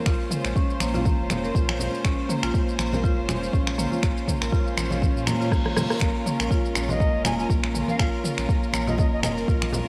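A deep, up-front electronic kick drives this hypnotic, earthy afro house excerpt, joined by a layered deep house kit of finger snaps, rim click, shaker and toms that shares the kick's home-cassette grain, ringing low-tuned congas played with hard hands in the background, and a round sine sub bass. Marimba arpeggios struck with medium hard mallets pass through a low-pass filter and tape echo while a clear, biting bowed string section holds a Bbm7 chord, both pumping under sidechain. An electronic reverse cymbal and a drum fill lead to 6.0 seconds, and at 6.9 seconds a distant, pure flute enters with an expressive vibrato melody.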